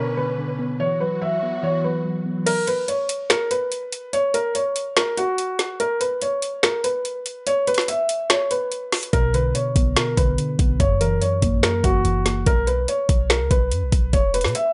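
A felt-muted upright piano opens this dark, brooding trap excerpt, its soft, mellow melody sitting up front over muted synth keys with a chorus sheen and a brief bed of lush, bowed symphonic strings that ends at 2.4 seconds. In B harmonic minor at 144 BPM with a half-time feel, the opening moves from Bmadd9 to Esus2 before the harmony drops out at 2.5 seconds, when the trap drum kit arrives with metallic hats, a woody snare, finger snaps and crash cymbal, though its knocking kick stays muted until 9.1 seconds. At that point the kick lands, the synth keys return, and a clean, boomy 808-style bass enters in the background, its deep sine tone decaying under a progression of Bmadd9, F#7, Bsus2 and E5. The piano carries the tune throughout, intimate and natural against the electronic drums. The mix is dry and gritty, with a dusky, rolled-off top end that suits the brooding mood.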